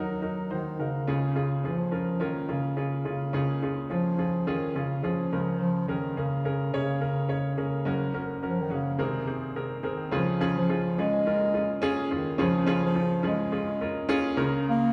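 A straight 4/4 pulse at 106 BPM carries this hopeful, anthemic pop piece in Db major, cut from a longer work, with a mellow, soft-attacked bass clarinet singing the solo melody in a classical style while a clear, woody, intimate and natural upright piano, its action noise audible, accompanies throughout. The harmony moves from Ebm through Db, Gb and Abadd9 before a new section arrives at 10.1 s, resolving back to Db. Both instruments sit up front, played live together in one room and bathed in a wet, large studio reverb.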